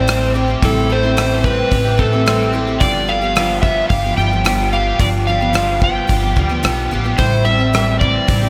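The up-front, dark overdriven slide guitar carries a wistful, dusty melody through its analog delay over a bright, jumbo-bodied picked acoustic, a crunchy double-tracked electric riff shimmering with analog chorus, a woody, growly pizzicato upright bass and a punchy small-room country kit of kick, hi-hat and rim click, all drifting through a dreamy plate-reverb haze in this straight 110 BPM folk and heartland rock excerpt in A minor that moves from Am7 to G7 at 2.8 seconds and back at 7.2 seconds.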